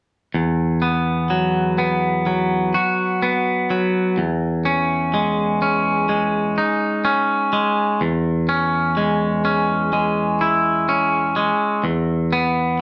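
Cinematic and soaring, this slow rock excerpt at 63 BPM in E major features a lone twangy electric guitar, clean, compressed and up front, picking arpeggios from 0.3 to 12.8 seconds through suspended and sixth chords over a steady E bass note, set in a live room with a wet reverb.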